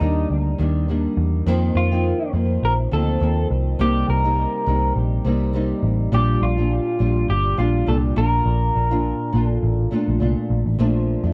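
The cassette-tape sound and light reverb frame this hazy, dreamy indie and bedroom pop fragment, where a vintage, foam-muted, round picked electric bass sits up front beside a dark, fingerpicked flamenco guitar coloured by analog chorus and a warbly pitch drift, while a slightly broken-up, compressed, lo-fi electric guitar through a small old amp carries the melody through chorus, plate reverb and tape echo until it drops out at 10.2 seconds.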